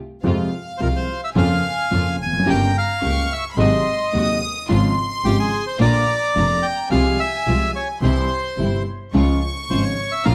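This melancholic, dramatic tango, cut from a longer piece, opens with a concert grand piano accompaniment of deep bass and short sustain, a clear, focused bowed double bass with vibrato, a floating sul tasto violin section on a pure second line, and lush symphonic strings playing stabs in the background. At 0.8 s a reedy, bright bandoneon steps up front with the melody, moving freely in a rubato feel through a moderate large studio reverb.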